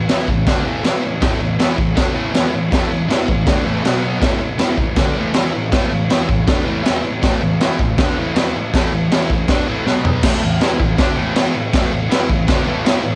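A home cassette recording with light reverb and small-room ambience opens this rowdy, swaggering garage rock excerpt at 160 BPM in a straight 4/4, tuned slightly low to A4 = 438 Hz. A thick, bright, double-tracked fuzz guitar sits up front with a picked riff moving between A5 and B5 chords, while a raw, gritty, saturated acoustic drum kit with a pumping room sound, punchy kick, high-tuned snare, toms and crash cymbal plays beside it. A drum fill at 9.9 seconds launches a new section at 10.2 seconds before the piece cuts off at 13.2 seconds.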